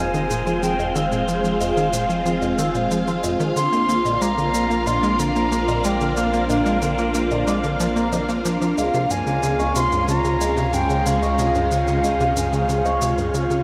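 A straight 4/4 pulse at 92 BPM is driven by a tight, punchy sequencer bass riff with a filter-plucked, ring-modulated edge and analog delay, underpinned by a round sine sub bass and an overdriven shaker and woodblock that sound re-recorded in a large room. Over this hypnotic, mysterious ambient space music, a bright, up-front string machine swirls with phaser and ensemble chorus through Fm, Bb and Db, while a soft-mallet vibraphone rings out delayed metallic arpeggios with fast motor vibrato. A pure wooden flute carries the melody with crisp attack and echoing delay, and from 0.2 seconds a very quiet, breathy wind-like tuned noise texture drifts beneath, all bathed in a long, wet shimmer reverb in this excerpt cut from a longer piece.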